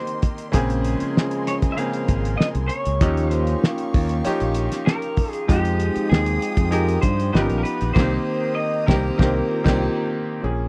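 A twangy, slightly broken-up electric guitar carries the melody over a bright concert grand piano accompaniment in this bittersweet, silky 1970s-style soul excerpt at 97 BPM, moving from Cm7 through Bbm9, Eb9 and Fm9 to a G7alt. Lush, woody strings and mellow trombone stabs sit in the background, while a muffled, cloth-damped drum kit with a fat snare and a growly, punchy fingered bass stay up front in the dry, close mix. The band hits an accent at 8.0 seconds, and a ringing vibraphone enters briefly at 9.5 seconds.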